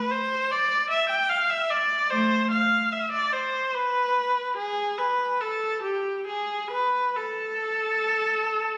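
This classical piece is a baroque-style suite movement for unaccompanied viola in A minor, and this short excerpt is cut from a longer work. The mood is flowing and grave, moving in 3/4 at a rubato pace of about 65 to 76 BPM. A single bowed viola plays alone for the full 8.8 seconds, ranging from A3 up to G5. Its tone is warm, with a smooth top, and the playing is expressive, colored by vibrato and portamento. The instrument sits up front in a moderately reverberant scoring stage, captured on a phone in the room.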